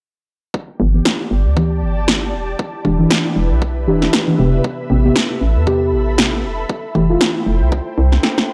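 A swung 4/4 groove at 117 BPM drives this sunny, soulful deep house passage in G mixolydian, built on an overdriven, layered kick re-recorded in a large room and a punchy, up-front overdriven snare that enters at 1.1 seconds. A hollow, bouncy FM bass with tube saturation and soft, dark chord stabs carrying chorus and tape echo both pump with sidechain under filter sweeps, moving through G6, Em7, Am9 and Fmaj9, while an ethereal, warbling vintage pad with ensemble chorus and its own reverb floats above. The sound is dry and gritty with light digital ambience, and a drum fill at 8.2 seconds brings the groove to a stop.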